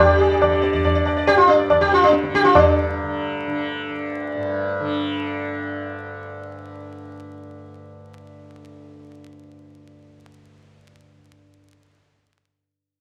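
Introspective and full of longing, this brief fragment of Hindustani classical music moves in a steady three-beat metre. A sitar carries the melody up front in the middle register, its plectrum-plucked notes buzzing and shimmering as the sympathetic strings ring around them, until it falls away at 3.8 seconds. Beneath it, a softly plucked tanpura sustains a low, buzzing drone that glows quietly in the background and continues after the other parts have finished. The tabla enters at 0.4 seconds, low-tuned and close, its dry strokes ringing only briefly before it drops out at 2.7 seconds. A wet studio reverb surrounds the ensemble, and a vinyl crackle gives the recording an aged, intimate patina.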